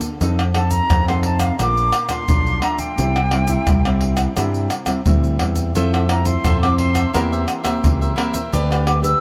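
A straight four-beat groove from egg shaker, tight surdo, pandeiro and tamborim drives this lively, playful cut from a longer samba and choro piece, the percussion compressed, saturated and up front. A picked electric bass sits close beside it, growly, amped and punchy. A warm nylon-string guitar supplies fingerpicked, classical-style accompaniment through chords such as F7, Bbmaj7 and C. The concert flute carries the melody from 0.5 seconds, airy and expressive with vibrato and tongued notes, set at a distance. At 5.8 seconds a bright, crisp cavaquinho joins as the harmony moves through Fmaj7, C7/E and G/D, all within light reverb.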